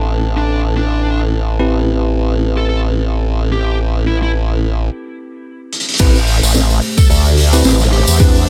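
A glitch hop excerpt with a swaggering, playful mood, built over a single Am7 chord in a swung 4/4 groove. From the start, a formant-sweep wobble bass sits up front with a saturated, chorused wobble, beneath a deep, detuned analog pad holding sustained chords in the background and bell-like tine electric piano stabs carrying 12-bit sampler grit and dub echo, both pumping against the sidechain. At 0.4 seconds a dark, distorted electric lead guitar joins with a bluesy picked melody, its notes trailed by dub echo. A break arrives at 4.9 seconds, and a raw garage drum kit with a high-tuned snare and rolled-off, low-pass filtered top enters with a fill at 5.7 seconds. The drop lands at 6.0 seconds as a punchy, tape-tinged electronic kick and a jingly tambourine in the background join the groove. The recording is dry, with little reverb.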